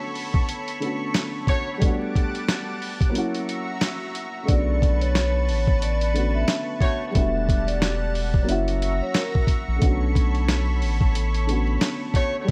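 Gritty, pitched-down sampler drums with a thumpy kick sit up front in this dark, tough, swung boom-bap hip-hop excerpt, laid over a woody, mellow upright piano with tape coloring, a lush detuned pad with chorus, and three brief jazz-style horn stabs with tape echo, while a deep saturated sub bass and a metallic, ringing vibraphone melody with slow motor vibrato both enter at 4.5 s, all inside a small room ambience with vinyl crackle.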